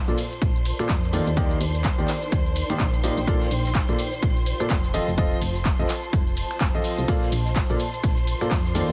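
A woody, slightly detuned upright piano riff sits up front in this joyful piano-house excerpt, carried over a punchy overdriven electronic kick, an analog drum machine with snaps, claps, hi-hat, ride and shaker, a close, dry tambourine, a very quiet acoustic kit with a fat snare, a round, mellow FM bass, lush bowed strings with vibrato and a blurred, evolving granular pad soaked in its own reverb, with the piano, bass, strings and pad all pumping against the kick.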